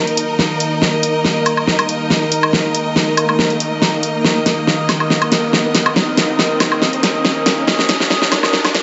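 Chaotic and menacing, this heavy wobble dubstep build-up at 140 BPM in a swung half-time 4/4 is cut from a longer piece. It centres on a single Eb5 chord and pairs a thick, detuned sawtooth unison pad with chorus and a bowed string section with vibrato, while a big-room electronic drum kit plays a continuous fill of hi-hat, woodblock and a huge, up-front snare in studio reverb, and a riser climbs in the background from 0.2 seconds.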